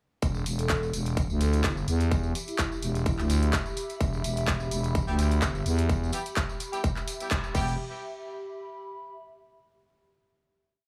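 A growling, thick FM bass sits up front from 0.2 seconds, its saturated, chopped phrases pumping against an overdriven, punchy electronic kick that drives a four-on-the-floor pulse in this bouncy, aggressive bass house piece at 127 BPM in E minor, with a light swing on the sixteenths. Around them, a layered, programmed dance kit adds claps, closed and half-open hi-hats and crashes, while a jingly, vintage-sounding tambourine plays hand-played sixteenths low in the mix. A mellow vibraphone with soft mallets drifts in the background from 0.6 seconds, offering short, ringing phrases through a digital delay. A warbling, nostalgic lo-fi pad fades in slowly, its detuned tones coloured by chorus, phaser and reverb as its chords shift gradually and pump with the kick. From 5.1 seconds a bright horn section punches syncopated jazz-style chord stabs with light vibrato, the band hits an accent at 7.3 seconds, and the pad carries the final note on its own until the piece closes in a small-room ambience.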